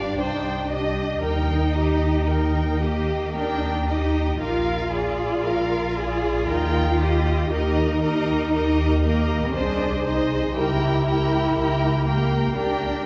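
Steeped in a church's long, wet reverb, this melancholic, solemn fragment of a slow romantic movement for chamber string orchestra moves at 58 BPM in a rubato 3/4, with a rich, expressive violin melody above a smooth, even second violin line, warm vibrato violas, cellos gliding with soft-attack portamento, and a dark, up-front double bass section anchoring the harmony as it drifts from C minor through Eb and Bb7 to a closing C#dim7.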